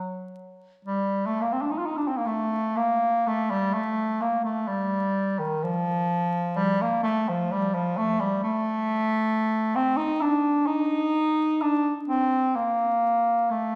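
A bright bass clarinet plays alone and up front in this meditative, yearning classical fragment, its free, rubato phrasing unfolding over uneven beats through a wet recital-hall reverb with a vinyl crackle beneath.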